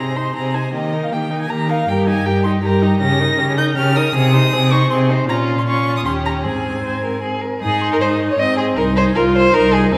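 Lively and spirited, this quick classical-period movement for string quartet in triple time is a fragment of a longer piece, its harmony moving mainly between tonic and dominant chords. The first violin carries the high, focused melody with a smooth-topped vibrato, while the second violin sings an expressive line with portamento from a more distant spot, the rich viola fills in close accompaniment, and the cello anchors the bass with an even, up-front tone. A wet scoring-stage reverb places the quartet further back in the room.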